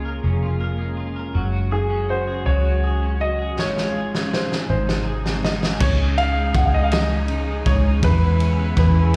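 Swaying in a straight 6/8 at 54 BPM, this tender, romantic pop ballad fragment in Db major sets a clear, polished baby grand piano melody with slapback echo over a bright, double-tracked twelve-string electric guitar, veiled con sordino strings in the background and a round, punchy muted electric bass up front, while a gritty, saturated indie drum kit with a fat snare enters on a fill at 3.6 seconds, the performance heard as a live gig through a club PA in small-room ambience.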